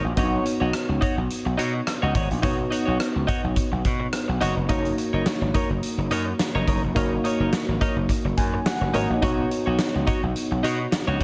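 Romantic and nostalgic, this 1980s-style pop excerpt moves at 106 BPM with a light sixteenth-note swing, as a clean, direct tine electric piano with analog chorus and shimmer reverb provides accompaniment under a twangy, compressed twelve-string electric guitar riff with subtle chorus and tape echo, while a gritty, overdriven slap bass sits up front and a huge arena drum kit with a punchy kick and medium-tuned snare enters at 0.2 seconds, the electric piano adding a fill at 8.1 seconds over chords moving from Badd9 to F#6 and back.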